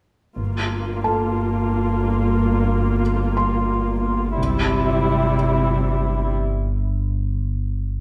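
Lightly reverberant and hushed, this eerie, ominous suspense cue from a cinematic film score opens at 0.4 s with a veiled, con sordino viola section up front and a more distant cello section bowing a Gm7 that moves to C/G, alongside a lush double bass section sounding in two brief entries, while a slow-attacking, deep rumbling drone with a ring-modulated edge settles beneath them and a soft, intimate felt-muted upright piano, its action noise audible, carries on with the drone after the strings stop at 6.4 s.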